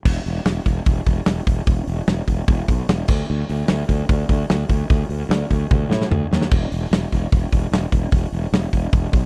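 A growly, fuzz-drenched fingered electric bass sits up front in this sunny, confident slice of classic rock, its overdriven tone bright and amped as it moves between E1 and A2. A big acoustic rock kit drives a straight 4/4 at 148 BPM, pairing a punchy kick and medium-tuned snare with hi-hat, crash cymbal and toms that carry a dark, smooth character and a sense of a large room. Both parts play together from 0.1 seconds through the end of the cut, which is taken from a longer piece and tuned slightly low, with A4 at 439 Hz. The drums break into a fill from 5.7 to 6.5 seconds. The production is dry and close in a 1970s studio manner, with little reverb, keeping the bass and drums immediate and forward.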